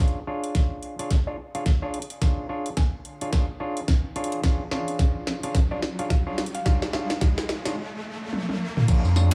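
A swung sixteenth-note groove in 4/4 drives this funky, gritty glitch hop excerpt, cut from a longer piece and built almost entirely as a build-up over a Ddim chord. A mellow, stringy clav plays stabs from the start, shaped by sidechain pumping, a low-pass filter and dub echo, while a layered electronic drum kit with a cracking snare, metallic hats, tambourine, toms and crash cymbal runs drum fills through most of the passage. A knocking, tape-warm electronic kick sits up front from 0.6 seconds, and a woody, wave-folded pluck carries a quiet melody in the background with chorus, dub echo and a filter sweep. An electronic riser enters at 1.6 seconds, and a short break arrives at 7.8 seconds before a final fill. At 8.9 seconds a gritty, nasal, saturated synth bass bursts in up front, and the recording, with its small room ambience and little reverb, keeps a close, dry sound.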